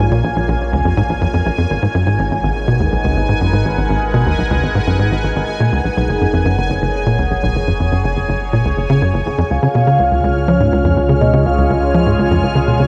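A punchy, nasal sequencer bass riff drives this mysterious, hypnotic stretch of ambient space music, its filter-plucked sawtooth tone sitting up front with analog chorus and delay, while a round sine sub bass anchors the low end. A bright, detuned resonant pad fades in across the whole passage under a bubbling texture of random filter steps, all bathed in shimmer reverb and the worn, warbling pitch drift of old cassette tape. At 9.5 seconds a soft, octave-layered synth lead enters with a dark, full tone colored by chorus, phaser, vibrato and delay.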